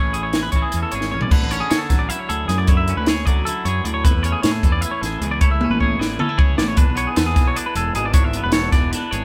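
Set in a lopsided 7/8 with a straight feel, this short cut from a longer piece of math rock and midwest emo feels bright and playful. A compact cocktail drum kit sits up front with a dry, acoustic sound, dark cymbals, a high-tuned snare and a punchy kick, and it plays fills at 1.0 seconds and again from 5.6 seconds. Two clean, picked electric guitars share a twangy, compressed tone: one plays accompaniment lower in the mix, while the other spins higher arpeggios. Beneath them, a fingered electric bass runs through fuzz and overdrive for a growly, amped character. The harmony moves through Amaj7, Dmaj9#11 and back to Amaj7 before landing on E7. Light reverb gives the feel of a band playing live together in one room.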